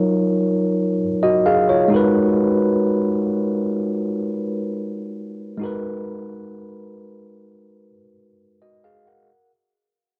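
A solo tine electric piano, clean and close, plays through built-in speakers with a cassette-tape character, ranging from F#3 to F#5 in G# dorian. This slow R&B fragment at 65 BPM carries a longing, late-night mood, moving from D#m7/F# to G#m9 at 1.9 seconds under a moderate spring reverb. Cut from a longer piece, the home cassette recording fades out from the very start through 9.3 seconds of its brief 9.5-second span.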